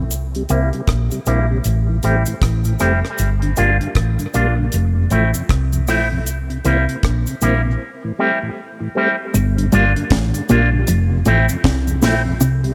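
A swung 78 BPM dub reggae groove in G dorian, deep and spacious, rides a dry, up-front drum kit with a high-tuned snare and tight kick, a dark, round hollow-body bass, a bright, twangy envelope-filtered guitar steeped in spring reverb and dub echo, a mellow tonewheel organ turning on a slow rotary speaker, and a faint cabasa, all cycling through C7, Am7, Gm7 and Fmaj7 under a filter sweep that carries through a break from 7.8 seconds, before a compressed, dark fingered guitar riff slips in low in the background at 9.3 seconds in this fragment of a longer piece.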